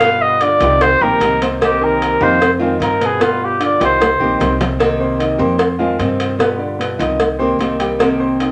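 This Latin excerpt in the Cuban son and guajira style moves at a danceable, warm 150 BPM in C minor, circling through Cm7, Fm7 and G7 chords. A clear flugelhorn leads up front with light vibrato and scooped notes, giving the solo melody a vintage pop flavour before it drops out at 4.6 seconds. Beneath it, a warm, fingerpicked flamenco guitar plays accompaniment while a warm concert grand piano with a deep, slightly boxy bass rolls out arpeggios. A woody, thumpy pizzicato upright bass anchors the low end. Round, low-tuned cowbell and bongos with a small-room feel keep the groove going, and a drum fill from 4.0 seconds leads into the second half, all set in moderate studio reverb.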